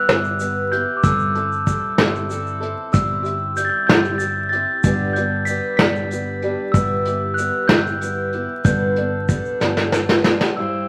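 Indie folk with a building arrangement, this warm, nostalgic passage moves at 63 BPM in a gently swaying 6/8 in G major, cut from a longer piece. A glockenspiel struck with rubber mallets carries the melody up front, its bell-like, ringing tone kept mellow and soft. Beneath it, a picked twelve-string acoustic guitar on old strings gives a woody, boxy shimmer with octave doubling, while a hollow-body short-scale electric bass adds a round, amped low end. A brushed drum kit sits close, smooth and dark with a tight kick and rolled-off top, joined by a grainy, bright egg shaker tucked dry in the background. The chords drift from Em/G through Am7/G, C/G and G, back to Em/G and on to a closing Gadd9, all over a held G in the bass. A drum fill at 9.6 seconds leads up to the entry of a fingerpicked steel-string dreadnought guitar at 10.6 seconds, which brings a full-bodied, fresh-stringed sound. 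A moderate large studio reverb and a layer of vinyl crackle give the recording a vintage, roomy glow.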